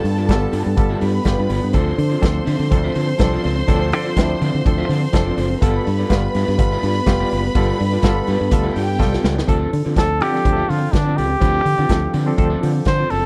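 A straight 4/4 disco groove at 124 BPM drives this danceable cut in D dorian, with a punchy vintage kit in a pumping small room and a direct-sounding fingered bass moving under G9 and Dm7 chords. A barky, reedy electric piano with light overdrive and fast tremolo and a dark guitar at the edge of break-up tucked in the background fill out the accompaniment, while a lush bowed string section with soft attack and vibrato carries a second line until the strings stop at 9.5 s after a drum fill. From 10.0 s a clear flugelhorn takes an up-front solo with scooped notes and tape echo, in a dry mix.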